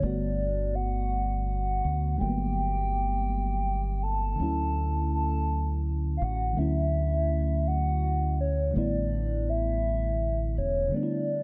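The sound is dry and close, with little reverb around the instruments, giving this short R&B fragment, cut from a longer piece, an intimate, tender mood. A hollow, woody synth lead, clarinet-like and softly attacked, carries the melody in a fairly high register, its sustained notes colored by vibrato, chorus and a faint breathy noise layer with a sub octave beneath. Under it, a mellow FM electric piano plays the accompaniment with a fast attack and decaying, warbling tones that feel vintage and dark. A deep dub fingered electric bass sits up front, punchy and amped, anchoring the straight 6/8 pulse before it drops out at 10.9 s while the keys and lead carry on to the end at 11.4 s. The harmony moves from Gmaj9 to Dmaj7 at 4.4 s and arrives at A7sus4 at 8.7 s.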